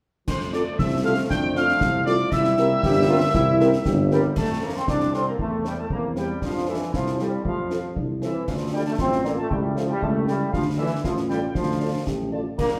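A proud, festive military-style march for wind band in 2/4, where a dark, tightly played trumpet section carries the melody over warm sustained trombone chords and a mellow tuba bass, while a wooden, rolled-off piccolo and a light-vibrato euphonium add second lines, a mellow horn section accompanies in the background, and close, dry snare, bass drum and dark clash cymbals drive it all through a roomy large-studio sound, heard from further back, that moves from F major into D minor around 8.5 seconds.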